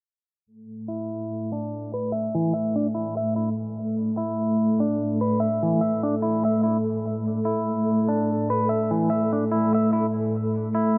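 Heard through light reverb and a dusky low-pass filter, this smoky, dark trip hop excerpt at 73 BPM with a gentle 16th-note swing rests on an E5 chord, where mellow sawtooth string-machine cellos with ensemble chorus hold sustained chords from 0.5 seconds, joined at 0.9 seconds by bright, picked clean electric guitar arpeggios roughened by vintage 12-bit sampler grit and trailed by delay, as a filter sweep runs across both parts through 11.0 seconds.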